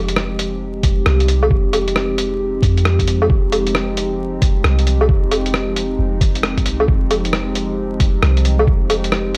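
Nocturnal and melancholic, this swung future garage fragment, cut from a longer piece, rests on a single Fm9 chord held by a warbling, detuned pad thick with chorus, phaser and sidechain pumping. A deep, round 808-style bass, also pumping, sits beneath, while an up-front, muffled sampler-style kit of hi-hat, rim click and woodblock carries 12-bit grit and studio reverb. A pitched-down, thumpy electronic kick joins at 0.8 seconds, and vinyl crackle coats the dry, gritty recording.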